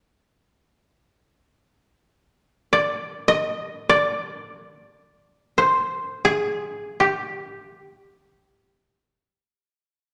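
Austere and calm, this short passage of Japanese chamber music unfolds in free time, cut from a longer piece. A solo koto carries the whole of it, plucked with fingerpicks and sitting up front in the mix. Its tone is mellow and woody, with a dry, acoustic character to the strings themselves. The melody stays in the G miyako bushi mode, moving within a narrow span from G4 to Eb5 across the roughly 10 seconds. Around the instrument, a wet recital hall reverb with a 1.6-second decay gives the spare, unhurried phrases a sense of space.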